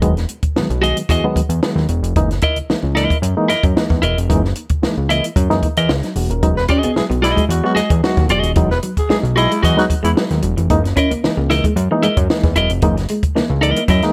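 A reedy electric piano with a fast tremolo stabs over a fat, saturated analog bass and a dry, compact cocktail kit with a high-tuned snare and punchy kick, joined at 0.8 seconds by a clean, compressed electric guitar accompaniment, while at 6.6 seconds a dark electric guitar at the edge of break-up adds a riff and a breathy, growling tenor saxophone plays a second line until 10.1 seconds, giving this funky, sly excerpt in a small room a cheeky charm as it sways between Emaj9 and F#13.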